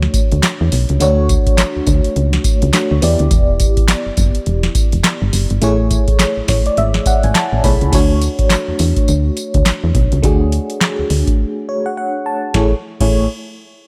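Swung sixteenths in 4/4 give this short new jack swing R&B cut a bouncy, flirty strut, driven by a booming, tape-warm analog drum machine with a deep kick, tonal snare, metallic hi-hat, handclaps, tambourine and crash cymbal. Underneath sits a punchy, round, dark FM bass, while a mellow FM electric piano with tremolo and phaser moves through Dmaj7, Em7 and Amaj7 chords and steps forward with fills at 6.2 and 11.4 seconds, the second landing in a brief break. The mix is close and dry, with little reverb.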